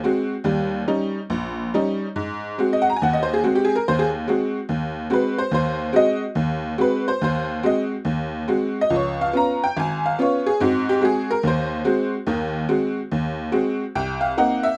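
Solo jazz in Ab mixolydian at 142 BPM, swinging and relaxed with a loose rubato feel, featuring an up-front tack piano whose metallic, jangly, vintage tone carries the whole 14.8-second cut from a longer piece, breaking into a honky-tonk solo at 2.2 seconds over mostly dominant seventh harmony in light reverb.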